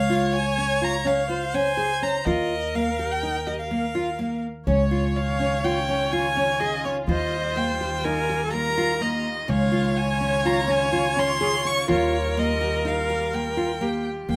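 Light reverb surrounds this short cut from a longer contemporary chamber piece, which feels playful and shimmering as it moves at 125 BPM in an uneven 5/4 with a straight feel, in Eb mixolydian. A single bowed violin carries the melody close and up front, its soft attack, vibrato and portamento giving it a dark, expressive voice. One clear, intense viola plays a second line with an airy bow. A fingerpicked nylon-string guitar spins arpeggios with a deep classical tone and audible finger squeak, and a pizzicato upright bass on steel strings adds woody low notes. At 4.7 seconds a muted chamber string section enters in the background with veiled, con sordino sustained chords, while the harmony sways from Db and Ebsus2 into alternating Dbadd9 and Ebadd9 chords.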